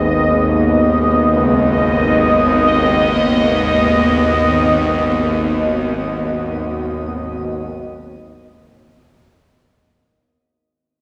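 A wet, echo-heavy mix with the air of a small room and a spring reverb's long tail frames this short, ominous cut from a longer dark ambient drone in G# minor, moving in free time and resting on a single G# minor chord. A nasal, string-like bowed drone sits up front in the low register with vibrato and a bright, tense edge, while a deep, mellow pad with chorus and shimmer reverb holds sustained chords above it and a bubbling, resonant filter texture steps randomly on one high note. A clear, polished grand piano plays very quiet arpeggios underneath, and the whole desolate scene fades out from 4.7 seconds to its close.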